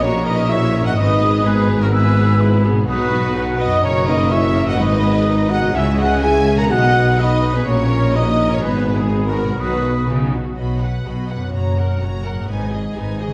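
Heroic and triumphant, this cinematic orchestral excerpt in B major at 125 BPM sets a clear, intense violin melody over a second violin line, airy flute and distant clarinet, with rich violas, mellow French horn chords, distant trumpet stabs, ringing harp arpeggios, and a bass of tuba, cellos and double basses, where the winds, brass and tuba drop out near 10 seconds and the strings and harp carry on to 13.3 seconds in a wet, dark scoring-stage reverb.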